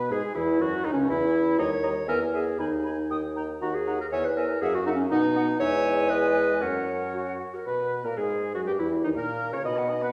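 This quick classical-period movement for wind quintet, cut from a longer piece, has a stormy, restless mood, moving in two with a flexible, rubato feel. The hollow concert flute carries the melody from the background with vibrato and tongued notes, while a warm, close-miked oboe with light vibrato supplies a second line. Up front, the clarinet's smooth-topped accompaniment is the most prominent voice, joined by a clear French horn with vibrato and a mellow, punchy bassoon with light vibrato anchoring the bass. All five instruments play throughout, the harmony shifting restlessly before a new section begins at 7.7 s and settles onto a diminished seventh chord at 8.7 s. The ensemble sits in the wet reverb of a recital hall, as if captured in a church or concert hall.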